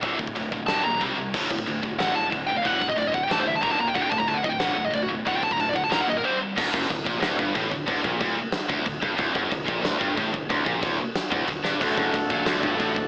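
Lo-fi and cassette-worn, with an AM-radio murk and light small-room reverb, this dark, relentless heavy metal passage sets a bright, double-tracked high-gain riff guitar up front over a growling, overdriven fingered bass in the background and a punchy big rock kit with china, splash and crash cymbals. A darker, distorted high-gain lead guitar takes a solo from 0.7 to 6.3 seconds. After a drum fill, a brilliant baroque-voiced pipe organ plenum, full of mixtures and chiff, arrives at 11.8 seconds with sustained chords.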